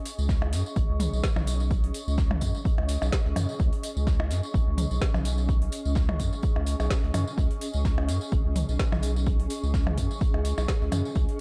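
Cool and hypnotic, this minimal techno excerpt with a 16th-note swing sets a punchy, tape-toned electronic kick and a thick, saturated sub bass up front in a dark, dry mix, while a pumping granular cloud pad drifts blurred and evolving above an overdriven garage drum kit with a woody snare and metallic hats, a background jazz brush kit, a jingly tambourine, and overdriven electronic blips and toms carried by dub echo.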